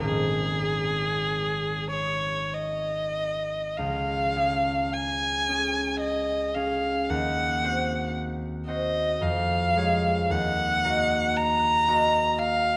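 Warm and lyrical, this romantic classical duo for violin and harp unfolds slowly in 3/4 at roughly 47-59 BPM, with a freely breathing rubato feel. A solo bowed violin carries the melody up front, its expressive line coloured by vibrato and portamento as it moves between Ab4 and Bb5. The concert harp supports it with fingerpicked, ringing accompaniment that spans from deep Ab1 up to Eb5, also placed close to the listener. The music opens in Ab major, then shifts to Db major at 3.8 s, passing through a Cdim/Eb and Db/F before settling on Ebm near 10.3 s. A moderate concert hall reverb gives both instruments a graceful, spacious glow throughout this brief passage taken from a longer piece.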